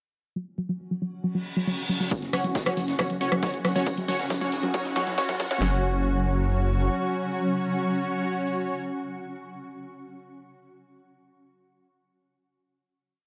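Driving peak-time techno at 137 BPM, intense and gritty, where a warbly, dusty pluck loops a three-step sequence that drifts against the bar from 0.4 s, while a swarming drone and a blurred granular cloud pad with slowly shifting chords pump behind it; a very quiet reverse cymbal and riser lead into a build at 2.1 s, where a punchy techno kit's four-on-the-floor kick, cracking snare and claps, an analog drum machine's programmed hats and rim, and a looped acoustic jazz breakbeat set in the background arrive alongside a thick, menacing detuned saw bass rolling in sixteenths and up-front supersaw stabs in dotted-rhythm chords, until a drum fill gives way at 5.6 s to a final chord held by the stabs, drone and pad on a dry, cassette-worn hardware sound.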